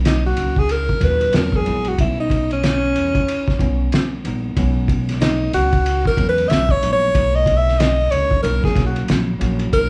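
Warm yet cool in mood, this jazz-hop excerpt sits at an easy 93 BPM in 4/4 with a swung sixteenth-note feel, centred in B major. A breathy alto saxophone carries the melody as a solo from the start, mellow and close-miked with vibrato and a soft subtone, placed up front. Beneath it, a worn, slightly out-of-tune tine electric piano supplies clean, direct accompaniment through chords such as Bmaj9, E9 and C#m13/B. A pizzicato upright bass with steel strings gives a woody, growly low end, while a cloth-damped drum kit of kick, snare, hi-hat and ride thuds along with a fat snare, tight kick and dark, muffled cymbals, its sound saturated and gritty with a rolled-off top. The band plays live in one room with light reverb and vinyl crackle, lending the lo-fi texture a dusty, intimate character until the cut ends at 9.9 seconds.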